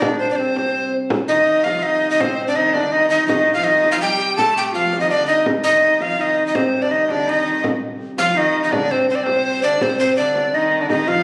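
Mysterious and driving, this medieval dance in triple time is led by a breathy, up-front tenor recorder with vibrato and chiff, joined by a bright clarinet second line over a warm, flute-stop organ drone and a small, close, dry frame drum under soft hands, while a rich, reedy viola da gamba with gut-string tone joins in the background at 1.3 s, the ensemble heard in a wet recital-hall reverb captured on a phone in the room.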